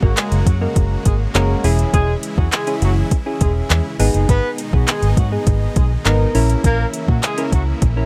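Driving, bittersweet dance-pop in which an up-front, overdriven electronic R&B kit of soft kick, metallic hi-hats and handclaps sits alongside a round, punchy muted electric bass, while soft chorused electric-piano-style synth keys, lush detuned supersaw chords and a distant, dark horn section with light vibrato and tape echo all pump in sidechain over an F#add9, C#m/E, G#m and A#dim progression in a dry, close mix, cut from a longer piece.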